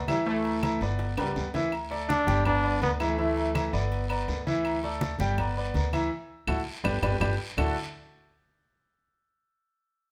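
A straight 4/4 salsa groove runs at 164 BPM through this joyful, festive clip, cut from a longer piece. Congas, claves, guiro, and agogo bells with timbales sit in the background: the congas are low-tuned and dry, the bells ringing, the claves woody and the guiro raspy and band-limited. A brilliant grand piano, with audible action noise and long sustain, plays accompaniment up front over a thumpy pizzicato upright bass. A close-miked trombone section adds a brief second line at the start, and a solo trombone, punchy with light vibrato and a smooth top, carries the melody from 2.1 to 3.9 seconds. A drum fill rounds off the opening section, and another fill with a band accent marks the closing bars over chords alternating between G and D, all set in a moderate large studio reverb.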